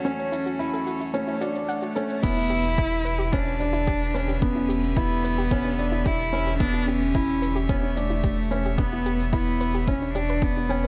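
Light reverb and a soft studio ambience frame this intimate, cinematic piece of piano and strings electronica, a short passage cut from a longer work, at 110 BPM in 4/4 with a straight feel, in E dorian and tuned to A4 = 438 Hz. From the opening, an up-front, close cello carries the melody with light vibrato and a soft attack, played sul tasto, while a felt-muted upright piano repeats a mellow riff with audible action noise and delay. Beneath them a string quartet, one player per line, holds pure, floating chords with sidechain pumping, and a dark, warbling pluck sits in the background playing arpeggios through chorus, delay and sidechain pumping. An overdriven electronic shaker and crash cymbal enter at 0.1 seconds during the build-up, as a filter sweeps over that pluck, until the drop at 2.2 seconds, where the harmony moves from A6/E to Em7. There a deep, overdriven electronic kick drum arrives alongside a round, sine-like sub bass held on E1 with a fast attack and sidechain pumping, and the kick stops at 10.5 seconds.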